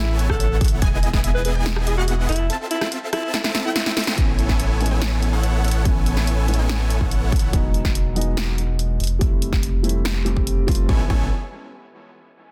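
A bright, euphoric future bass cut at 143 BPM in a half-time feel opens on a drop in A lydian: a smooth-topped alto saxophone melody with vibrato rides over huge detuned supersaw chords, two very quiet pluck arpeggios (one round and dark with chorus, one lush and punchy) and a deep, saturated sub bass. The sax, chords and bass each pump to the sidechain, with digital delay on the sax and dub echo on the chords. A punchy layered kick makes a brief early appearance, while a punchy layered snare with hi-hat and rim click drives a fill into a band accent at 4.1 s. From 4.2 s the kick returns and the sax and plucks give way to a soft, felt-muted upright piano with audible action noise, also pumping and echoing. The supersaws drop out at 7.5 s and return only briefly near the end of this dense, heavily limited mix with digital ambience.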